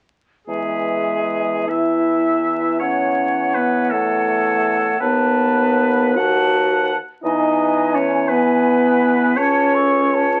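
A rubato 6/8 lilt at 48-58 BPM, counted in dotted quarters, carries this slow, tender romantic movement for wind quintet in E major, heard as a short passage cut from a longer piece. From 0.5 s to 10.4 s the airy, distant silver flute sings the melody with vibrato over a second line from the oboe, while clarinet and oboe share a clear, vintage classical tone, the clarinet very quiet in its accompaniment, the warm French horn sits up front, and a mellow, roomy bassoon supplies the bass. The sound has moderate studio reverb and the crackle of a very old 78 rpm record.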